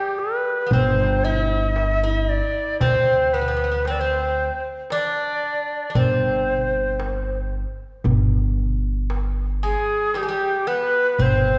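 A breathy, reedy ney carries the up-front vibrato melody from 0.0 seconds over a metallic, double-strung picked bouzouki second line, joined by a clay-shelled darbuka at 0.2 seconds and a woody, thumpy pizzicato upright bass at 0.7 seconds, in a soulful, hypnotic makam ensemble passage in G makam hicaz at 114 BPM in 10/8, tuned to A4 = 439 Hz and bathed in a wet 1.8-second scoring-stage reverb.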